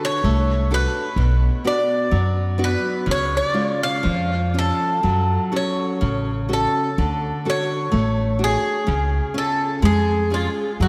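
A picked Irish bouzouki, its double strings ringing metallic and up front through a diffuse ambient delay, carries a longing melody over fingerpicked classical nylon-string guitar from the opening moment of this passionate fado-style ballad excerpt. At 0.2 seconds a woody, growly upright bass joins in pizzicato, thumpy and close, as the rubato 2/4 pulse drifts around 63 BPM through chords of D, Bm, C# and F#m. A lush hall reverb soaks the whole mix in a dreamy wash.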